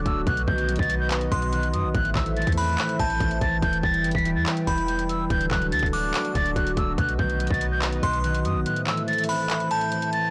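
A hollow, airy concert flute carries the melody high above the mix, its vibrato and crisp attack heard up close through a low-pass filter and tape echo. This melancholic, eerie trap excerpt moves at a half-time feel, with a trap drum kit of hard-clipped kick, metallic hi-hats and handclaps roughened by vintage 12-bit sampler grit. Underneath, a deep, boomy 808-style bass with a clean sine tone holds the low end until 8.7 seconds, when the kick also drops out. A thumb-plucked concert harp rings through a low-pass filter, and a soft, detuned pad with slow attack and long release sustains chords with chorus. A glassy, crystalline FM bell adds a bright second line with chorus and tape echo, as the harmony cycles through B, Am, Em and D. The whole recording sounds dry, blown-out and overdriven.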